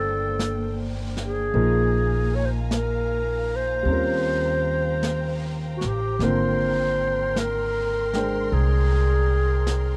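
A breathy, whispered clarinet carries the melody up front with light vibrato and scooped notes in this tender, late-night jazz ballad, cut from a longer piece and swung gently over chords moving from Cm7 through Eb13 to Abmaj9. Warm grand piano accompanies, while a lush bowed string section holds sustained chords and a woody pizzicato upright bass sits up front alongside the clarinet. A vintage brush drum kit with a rolled-off top enters at 0.4 seconds, and the whole piece has a dry, intimate, 1970s-style studio sound.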